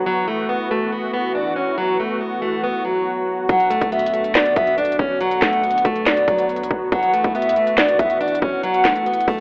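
A picked steel-string acoustic guitar with fresh strings sits up front from the start, its melody softened by a low-pass filter and trailed by tape echo over a smooth, detuned analog pad in this eerie, brooding half-time trap excerpt. At 3.5 seconds a hollow, woody clarinet-like synth lead enters with vibrato, chorus and tape echo, carrying a second line above as a trap kit arrives with a hard-clipped kick, sharp snare, crisp hats and handclaps, and a deep, boomy 808-style bass hangs back in the background. The harmony moves from Esus2 to Bm and back, and the whole mix has a dry, gritty, telephone-like character with a digital ambience.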